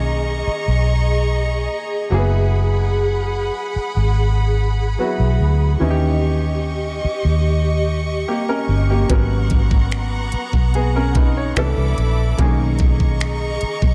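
A clear, lightly reverberant contemporary R&B excerpt in G# minor at 73 BPM, moody and sensual, where a round, foam-muted vintage electric bass sits up front beneath a short-sustained baby grand piano and a smooth, close string section whose bowed chords pump with sidechain, moving through lush harmonies like Bmaj13 and D#7b9 before an electronic trap kit of finger snaps, crisp hi-hats and a knocking kick enters at 9.1 seconds.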